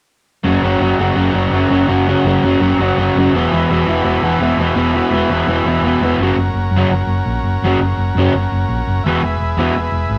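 A crunchy, overdriven electric guitar leads this rowdy, raw rock excerpt, its double-tracked riff sitting up front and ringing low from E2 to F#3 between 0.4 and 9.7 s. Beneath it, a dark, round hollow-body short-scale electric bass, played with the fingers through an amp, holds down the low end. A vintage combo organ adds buzzy sustained chords in a clean tone with light vibrato, higher in the range from C#4 to B4. The tune moves at a brisk 168 BPM in a straight 4/4 in F# mixolydian, alternating between F# and E chords across two sections, the second arriving at 6.2 s. A moderate stone-room reverb and tube saturation give it the rough feel of a rehearsal-room take, and it is cut from a longer piece.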